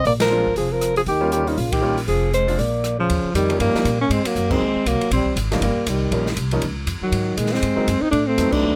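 The recording is close and detailed, with little reverb, so most parts sound near and dry in a small-room jazz setting. A brisk, relaxed small-group swing-and-bop tune in Eb mixolydian moves at 238 BPM in 4/4 with a light swing on the eighth notes. A mellow alto saxophone carries the melody up front, its smooth top and vibrato leading, while a trombone in a bucket mute plays a veiled, distant second line with soft attacks and scooped notes. A woody, thumpy pizzicato upright bass on gut strings sits forward underneath, and an acoustic drum kit with dark cymbals, a boomy kick and rim clicks enters at 0.1 seconds. A clear, intimate grand piano joins at 0.3 seconds, its action noise audible as it comps through dominant ninth chords before a diminished chord near the close. The band punches accents together, the last at 8.5 seconds, in this short section cut from a longer piece.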